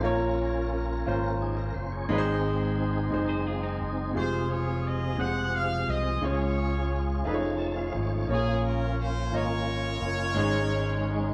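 A warm, long-sustaining baby grand piano, a full tonewheel organ with key click, light overdrive, chorus vibrato and a slow rotary speaker, and a dark, round fingered electric bass sitting up front open this reverent, soulful gospel excerpt in 6/8, played live by a band in one room with moderate large-studio reverb, as a clean, compressed, picked electric guitar adds a brief second line at 3.3 seconds, a clear, pop-style horn section with light vibrato takes the melody from 4.2 seconds, and the organ adds a fill at 7.3 seconds.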